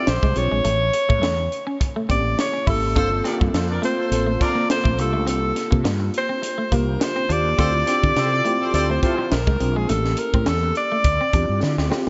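Polished 1980s jazz-funk pop at 104 BPM in D minor, bittersweet and slick, with a breathy, whispered alto saxophone carrying the melody up front with slapback echo over a distant horn section that drops out at 9.3 s, a worn, slightly out-of-tune tine electric piano with chorus, a twangy guitar riff at the edge of break-up, a round, punchy fretless bass, and a crisp fusion kit with a high-tuned snare that closes on a fill at 11.6 s, the mix sitting in a lush hall reverb for a big arena sound.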